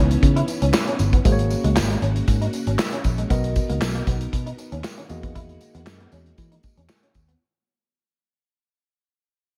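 A worn, slightly out-of-tune electric piano with phaser, a lush sawtooth string machine in the background, a slightly broken-up picked guitar riff and a round, foam-muted bass open this slick, funky early-eighties boogie funk fragment. Up-front drums with handclaps, hi-hat, a tight kick, a snare and gated reverb join at 0.1 seconds, and a jingly, distant tambourine enters at 0.5 seconds, all over C#m9 to Emaj9#11 chords as the passage fades out.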